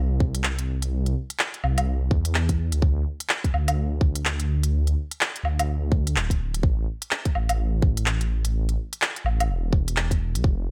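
A dark, detuned sawtooth bass opens this future garage excerpt at 0.0 seconds, deep and rumbling in the lowest register, its saturated tone beating with a sine-like weight beneath a fast attack and long sustain. An electronic kick drum arrives almost at once, tight and tape-warm, followed by an organic electronic kit of handclaps, smooth hi-hats and woodblock from 0.3 seconds. Both drum parts sit up front with a small room ambience around them, while the bass stays close and dry with little reverb. The 4/4 groove carries a swung sixteenth-note feel that gives the pulse a loose, shuffling sway. The mood is nocturnal and rainy, a brooding after-hours atmosphere that holds steady until the bass ends at 10.7 seconds.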